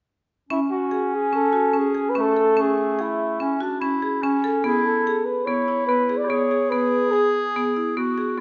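At 0.5 s a flugelhorn, clarinet and marimba begin together in this playful, restless contemporary instrumental, cut from a longer piece and moving at 145 BPM in 5/4 with a straight feel in A major. The flugelhorn carries the melody up front with a mellow, vintage jazz tone, colored by vibrato and scooped notes, and it drops out at 7.7 s. Beneath it the clarinet plays a second line in a classical style, its sound warm yet distant and roomy. The marimba, struck with hard mallets on padauk bars, spins arpeggios that sound woody, bright and percussive, close-miked and dry in the foreground. The harmony moves from Amaj7 to E at 4.6 s, and a recital hall reverb surrounds the ensemble until the clarinet and marimba finish at 8.4 s.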